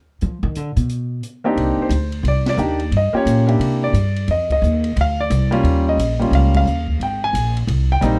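A woody, thumpy upright bass with gut strings sits up front and opens this smoky, cool excerpt of a swinging C minor jazz piano trio at 177 BPM, taking a short plucked solo. An intimate grand piano, clear enough that its action noise is audible, enters at 1.4 seconds and carries the melody over Cm9, Gm7b5, C7, Eb9 and Abmaj9 harmony. A small-room drum kit with dark cymbals, a high-tuned snare and a boomy kick sits further back, and the trio hits several shared accents within a mellow, lightly reverberant mix.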